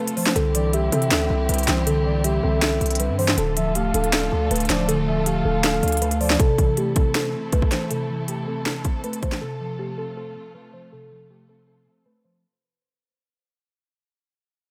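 Dark, eerie trap in A minor at 159 BPM with a half-time feel, this fragment pairs muted, felt-like synth keys (softened with chorus and phaser) with a clean, fingered electric guitar and a distant, bowed chamber string section moving through Cadd9, Dm, Am and F. Up front, an overdriven electronic drum kit with a hard-clipped kick, sharp snare, crisp hats and handclaps sits alongside a punchy, heavy 808 bass. Above them floats a breathy, flute-like synth lead with vibrato and tape echo. The bass and lead drop out at 6.4 seconds as the piece begins to fade, and the drums stop at 9.4 seconds, leaving keys, guitar and strings in a digital ambience.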